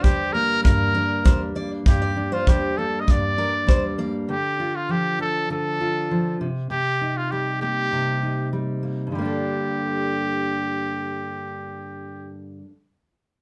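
Tender and wistful, this short acoustic pop passage, cut from a longer piece, has the close feel of a band playing live together in one room, with a moderate studio reverb. A bright, present trumpet sings the solo melody in a pop style, sitting up front over a full-bodied fingerpicked dreadnought guitar that carries the accompaniment throughout. A second, jumbo steel-string guitar with fresh strings adds picked arpeggios in the opening moments before dropping out at 4.1 s. A punchy acoustic kick drum, played with brushes and caught in a small room, supports the start and stops at 3.8 s. The harmony moves from G minor through D minor and C minor seventh, then settles on a G minor add nine chord at 9.1 s, giving the close a gently unresolved, yearning color.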